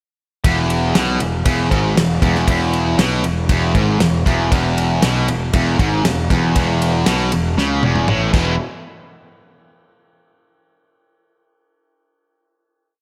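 From 0.4 s, a bright, overdriven, double-tracked electric guitar plays a single-note riff up front in E major, doubled by a fuzzy, driving eighth-note electric bass and backed by a damped, dry 70s drum kit with dark cymbals, a fat snare and a tight kick in a big rock groove; this sunny, confident classic rock piece runs at 118 BPM in 4/4 with a straight feel, tuned to A4 = 444 Hz, and a drum fill at 7.6 s leads into a final hit at 8.6 s, all set in a lush hall reverb with a big arena sound.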